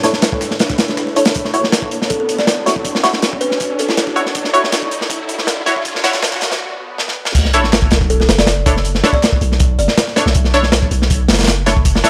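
A dry, gritty hardware sound with transformer saturation and a light small-room ambience frames this atmospheric, frenetic drum and bass and jungle cut in B minor at 160 BPM, where an up-front crunchy breakbeat kit with dark cymbals and a tight kick drives over a very quiet, overdriven soul sampler-style kit, muted filtered dub chord stabs with lush chorus and dub echo, and an ethereal, detuned pad in the background. A woody, hollow kalimba melody with dub echo drifts in at 2.1 s while an electronic riser, swell and sub drop build toward a brief break and drum fill. The drop lands at 7.4 s with an impact as the Bm11 chord returns, and a deep, mellow 808-style sine bass enters up front at 7.9 s.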